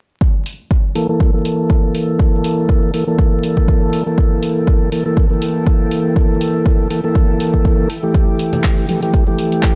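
A dry, gritty hardware sound with transformer saturation and a bed of vinyl crackle frames this moody, late-night deep house excerpt in G dorian, moving at 121 BPM in 4/4 with a 55% swing on the sixteenths. An overdriven, layered electronic kick sits up front with a deep weight, carrying the bloom of a large room, while a punchy analog drum machine adds handclaps and hi-hat from a smaller space. A clear tonewheel organ plays stabs between E3 and A4 through a slow rotary speaker, with sidechain pumping, a low-pass filter, tape echo and a filter sweep running across its whole length. From 2.9 seconds a very quiet granular cloud pad drifts between E4 and G5, blurred and detuned, with a slow attack, long release and its own built-in reverb. The harmony rests on Gm69 before shifting to Emadd11 at 7.9 seconds, and distant congas surface briefly from 8.5 seconds, very quiet and set in a large room.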